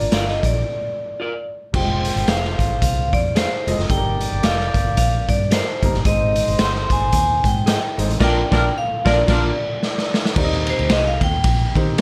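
Uptempo 1960s-style soul at 111 BPM in Eb major, swung and joyful, where a ringing vibraphone with slow motor vibrato and slapback echo carries the melody over woody upright piano, round foam-muted electric bass and a punchy, up-front garage drum kit, while a slightly broken-up electric guitar adds background stabs with slapback echo and a distant, roomy horn section plays a second line from 1.7 to 9.4 seconds, following a break at 0.7 seconds and leading into a band accent and drum fill near the close of this warm excerpt.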